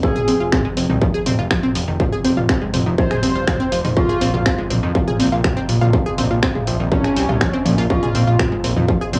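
Melodic techno with a hypnotic, dark mood, this brief fragment from a longer piece pairs a brassy, vibrato-tinged analog synth brass melody (with tape echo) with an eerie, inharmonic synth bell line in the background, while a lush, punchy unison pluck runs arpeggios; beneath them sit a very quiet, nasal analog drone, an up-front distorted electronic kick drum, and a techno drum kit of finger snaps, hi-hats and toms from 0.2 seconds. A fat, sawtooth analog bass enters at 0.3 seconds, and sidechain pumping and cassette-tape grit color several parts within a small-room home-recorded sound.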